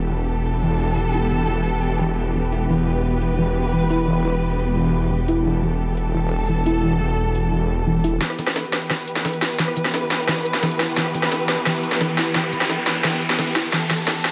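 A lightly reverberant digital ambience frames this dark, technical drum and bass excerpt, cut from a longer piece and set at 174 BPM in E minor over a single E minor chord, with a mechanical, aggressive mood. Muted, con sordino strings hold veiled, vibrato-tinged sustained chords up front, while a soft, round pluck runs arpeggios through analog chorus and dub echo, its filter sweeping through the opening 8.2 seconds. A snarling, growling saw bass, detuned and distorted with a moving notch, sits on a low E up front until 8.2 seconds. The main electronic kit enters at 0.5 seconds with a cracking snare, bright hats, rim clicks and shaker, overdriven and re-recorded in a small room. At 8.2 seconds the track turns to a build-up and drum fill, as a very quiet, pitched-up, gritty breakbeat sampler kit with a high-tuned snare joins the main kit. From 9.4 seconds an electronic riser runs in the background to the close.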